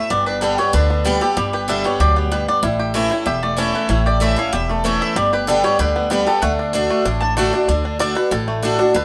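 A straight 4/4 pulse at 190 BPM sets this lively, joyful bluegrass cut in motion, taken from a longer piece in D major with the tuning set slightly high at A4 = 445 Hz. The upright bass sits up front with a woody, warm pizzicato on steel strings, while the picked acoustic archtop guitar, also up front, rings bright on fresh strings as it carries the accompaniment. Above them, the mandolin's picked double strings give a warm, woody melodic voice, and the five-string banjo, played with fingerpicks, adds a twangy, percussive edge to the melody. The harmony moves through G, A, G and D. The mandolin stops at 7.5 seconds, and from 7.7 seconds the banjo takes a short solo that runs to the end at 9.0 seconds. The band plays live in one room, wrapped in a moderate stone-room reverb that lends a natural, lived-in air.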